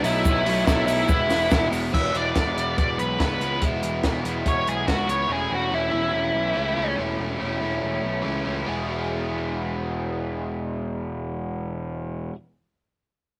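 A dark, distorted octave-fuzz lead guitar carries the melody in this jangly, wistful indie rock piece at 143 BPM in E major, taking a solo from 1.9 s until it drops out at 7.0 s. Beneath it, a bright, double-tracked overdriven electric guitar plays the riff and a growly fuzz picked electric bass holds the low end through to the close. A compact cocktail drum kit with a high-tuned snare and tight kick sits up front until 5.2 s, a grainy egg shaker stays briefly in the background, and the chords move from B7sus4 to E and A/E in a rough rehearsal-room recording with light reverb.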